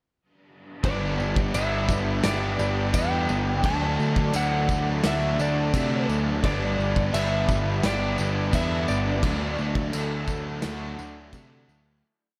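Dreamy, blissful shoegaze and dream pop rock at 86 BPM in D major, where a half-time groove on a loose indie drum kit with dark cymbals and a pumping small-room sound carries an up-front, growling overdriven bass playing driving eighth notes, crunchy overdriven and thick fuzz guitars strumming background chords with whammy-bar dips (the first trailing reverse reverb, the second chorused), a very quiet bright clean guitar picking arpeggios, a lush detuned sawtooth pad holding sustained chords, a jingly vintage tambourine, and a dark, slightly broken-up lead guitar with delay tracing a motif-based melody over G and D, all soaked in plate reverb before fading out from 9.2 to 12.0 seconds.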